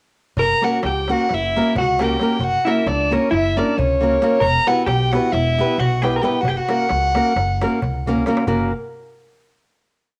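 Balkan folk in the manner of a wedding band, this short, complete piece runs at a brisk 266 BPM in 9/8 with a straight feel, set in F# phrygian dominant and tuned slightly low, its mood restless and bittersweet. A single bowed violin sits up front with the melody, played sul tasto with a soft attack, a pure, floating tone and a smooth top, building its line from motifs in period phrases. A clean, compressed hollow-body electric guitar, picked, doubles the violin in unison an octave beneath, while an up-front nylon-string guitar, fingerpicked in a classical style with a bright, full-bodied sound, sets triad chords on the off-beats. Underneath, a woody pizzicato upright bass with steel strings and tube saturation plays root and fifth on the main beats, and a small metal-shelled darbuka, crisp, high, close and dry, keeps a two-stick pattern in the background. The harmony moves from F# to Em at 4.4 seconds and back to F#, a drum fill at 8.0 seconds leads into a final chord from 8.5 seconds, and the whole has the character of a home cassette recording with moderate spring reverb and studio ambience.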